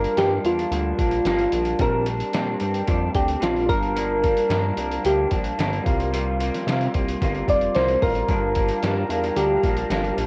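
Indie pop with a bedroom-pop haze, this short passage cut from a longer piece moves at 111 BPM in a straight 4/4 and sits in G minor, with a lonely, mellow mood. Soft, round electric-piano-like synth keys carry the melody and hold the spotlight throughout, their gentle tone coloured by analog chorus and cassette tape. Beneath them, a barky tine electric piano sits in the background through a combo amp, while an electric guitar through a small old amp adds slightly broken-up, fingered accompaniment with chorus and vibrato. A glossy, retro chorused synth bass with a filter sweep anchors the low end, and a lo-fi sampler-style kit of hi-hat, thumpy kick and medium-tuned snare sounds muffled, pitched down and tape-softened. The harmony drifts through Gm7, Bb69 and C7sus4 before returning to Gm7 at 8.3 seconds, where a swirling, airy phased analog pad slips in beneath light reverb and the warm feel of a home cassette recording.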